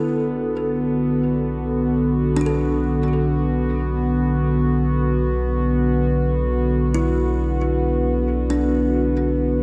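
A warbly, tape-like pad sits up front in this peaceful, luminous ambient passage, holding sustained chords with a slow attack and long release that give it a mellow, nostalgic, lo-fi glow. Chorus, a built-in reverb and a phaser colour that pad, and its warbling tone rests on a single Bm7 harmony in free time. Beneath it, a round, deep sine sub bass holds a low B, sitting close and steady from start to finish. A kalimba plays quieter arpeggios throughout, its woody, hollow-box thumbnail plucks bright and ringing, trailed by dub echo. The whole mix is echo-heavy and bathed in a moderate spring reverb, and the 9.6-second stretch, tuned to A4 = 439 Hz, is cut from a longer piece.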